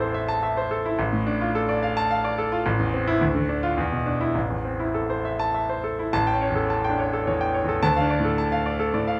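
A large studio's reverb, wet and lingering at 1.2 seconds, surrounds a single concert grand piano placed up front in this short fragment cut from a longer work. It is a classical virtuoso study in triple time, played with a free, rubato feel and a stormy, passionate character. The piano sounds bright and polished, with a deep bass reaching down to A1 and a short sustain on each note, while its upper range climbs to A5. The opening passage circles through minor harmonies and a bare fifth before returning home, and at 6.1 seconds a new section begins on a dominant seventh chord that leads toward a minor sonority. The whole fragment lasts just over nine seconds, ending at 9.2.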